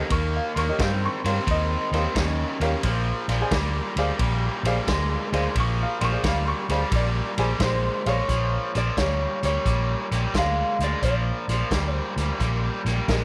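A bright, overdriven garage guitar riff opens this rollicking, laid-back electric blues shuffle excerpt, joined by a growly, up-front fingered bass, a vintage drum kit with a tight kick, medium-tuned snare, hi-hat and ride, and a woody, worn, slightly detuned upright piano that accompanies the Eb7 and Bb7 changes until 8.2 seconds, while a dark, lo-fi, slightly broken-up electric guitar through a small old amp takes the melody from 7.6 seconds, the whole band sitting in a light small-room reverb.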